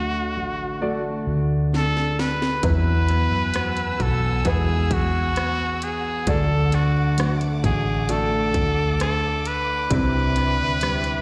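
A slow, straight 4/4 pulse at 66 BPM carries this hopeful, emotional pop ballad excerpt, heard as a live gig through the venue's PA with recital hall reverb. A brilliant, up-front trumpet sings the solo melody with vibrato and scooped notes, while a natural-sounding baby grand piano and a dark, full-bodied nylon-string guitar fill in beneath, the guitar's thumb-plucked arpeggios catching the odd finger squeak. A round, foam-muted electric bass sits deep and punchy under it all. At 1.7 seconds an electronic, layered drum kit bursts in with a fill, its punchy kick and cracking snare overdriven and re-recorded in a large room. From 2.6 seconds a lush, distant string section adds bowed, expressive sustained chords with portamento in the background. The harmony moves from D to Eadd9, back to D, and on to Cadd9, lending the passage a yearning, open lift.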